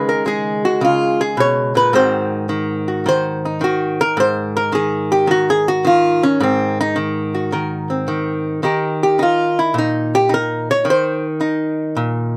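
Swinging and warm, this short solo jazz excerpt features a lone archtop guitar, miked and amplified, playing from start to finish at 12.4 seconds with a clean, picked, compressed hollow-body tone that sits up front. Its dark electric voice moves from a Dbsus2 through an Ab9 before reaching Eb at 8.6 seconds, all in a lightly reverberant, dark and warm production that suggests a passage lifted from a longer piece.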